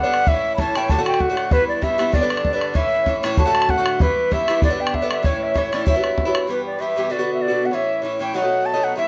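A bright wooden flute carries the melody from the first moment, its airy, straight tone heard close and tongued with expressive phrasing, ranging from B4 to B5. An Irish bouzouki accompanies throughout with picked, metallic double strings set up front, while a damped, tight bodhran drives the rhythm until about 6.4 seconds. This Celtic reel in E dorian runs at 193 BPM in 4/4 with a light swing on the eighths, giving it a dark yet lively, spirited feel. The harmony cycles through A, D, Em and G, touching an Emadd9 before the repeated section at 6.5 seconds turns toward Em, Bm, A and a closing B7. A moderate studio reverb gives the ensemble a sense of space in this short cut from a longer piece.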